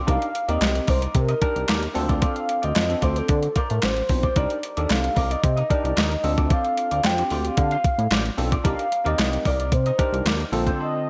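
Danceable and late-night, this short cut from a longer piece is early-eighties boogie funk in C dorian at 112 BPM, moving in a straight 4/4 over a Cm9 to Dm7 vamp that turns to Bbmaj9 near the close. A crisp 8-bit digital drum machine sits up front with a thumpy kick, medium-tuned snare, hi-hat and handclaps, overdriven and wrapped in gated reverb. Beneath it, a glossy chorused synth bass with a fast-attack filter pluck holds the low end, while a barky, bell-like tine electric piano adds bright accompaniment with a subtle chorus. A round, horn-like synth lead carries the melody with soft attack, vibrato and chorus, and a twangy, scooped clean electric guitar picks a riff with lush chorus from the background. The whole mix has a bright 1980s-style digital sheen in a moderate hall reverb, and the drums drop out at 10.8 s for a brief break before the cut ends at 11.1 s.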